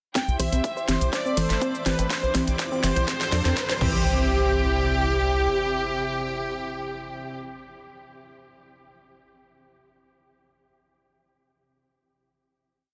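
Progressive house at 123 BPM in C major, expansive and hopeful, where a smooth, airy supersaw sings arching motifs doubled in unison by a clear, vibrato-rich studio violin section over a thick unison pad, a detuned 3-step arpeggio loop drifting against the bar, punchy off-beat pluck chords, a dark galloping sixteenth-note sequencer bass and a faint reversed swelling texture, while an overdriven four-on-the-floor kick with cracking snare, bright hats, cabasa and crash drives a filter-swept build with a drum fill and riser that breaks at 4.1 seconds into a final hit, the melodic parts and bass pumping under sidechain and several of them echoing on tape inside a dense, heavily limited master.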